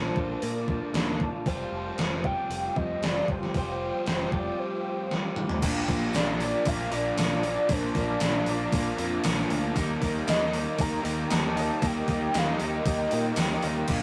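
Shoegaze and dream pop rock at 116 BPM in Bb major, wistful and blissful, this excerpt sets a pure, round sine lead with chorus, phaser and vibrato over an ethereal, airy pad, dark and hollow-body overdriven guitar riffs, a direct picked bass and an up-front gated drum machine with a thumpy kick, whose fill at 5.1 seconds brings in a bright, double-tracked distorted guitar and a jingly tambourine at 5.6 seconds as the chords move from Bbmaj7 through Fsus2 to Ebmaj7 in a rough rehearsal-room sound with tube saturation.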